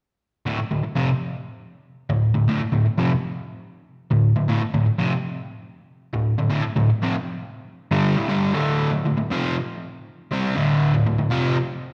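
A crunchy, overdriven electric guitar plays alone from 0.5 to 11.6 seconds in this menacing, driving rock passage in D minor at 119 BPM, its picked, double-tracked part sitting up front and ranging from D2 to C4. The guitar starts on a D5 power chord before shifting to D minor at 8.5 seconds, where a new section begins. A wet, hall-like reverb gives the recording a big arena sound, and the passage is cut from a longer piece.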